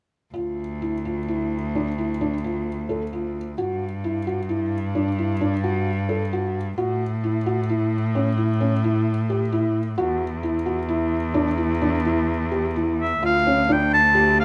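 A contemporary instrumental piece at 131 BPM in an uneven 7/4 metre with a straight feel, carrying a hopeful, playful mood. A felt-muted upright piano plays arpeggios throughout, its tone soft, intimate and vintage with a thick felt dampening the hammers, while a single bowed cello holds the bass line beneath it with a focused, vibrato-rich sound placed up front. The harmony moves from D minor through chordless passages and an A power chord before returning to D minor. Near the end, at 13.0 seconds, a solo oboe enters in a classical style, clear and forward, carrying the melody high above the piano and cello until the close at 14.4 seconds. Light reverb and close, detailed microphones keep the sound present and immediate, and the piece is cut from a longer work.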